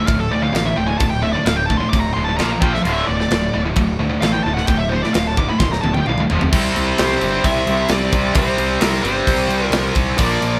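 Heavy metal at 131 BPM in 4/4, epic and relentless, with a warm high-gain lead guitar soloing over a bright, heavy riff guitar, a tight distorted rhythm guitar in the background, growly fuzz-laden picked bass and an up-front tight drum kit with bright cymbals, whose fill at 5.6 s leads into a new section at 6.5 s, before a dark second lead line joins in the background from 7.0 s, moving through D5, Bb5, F5 and C5 chords in a moderately reverberant live room.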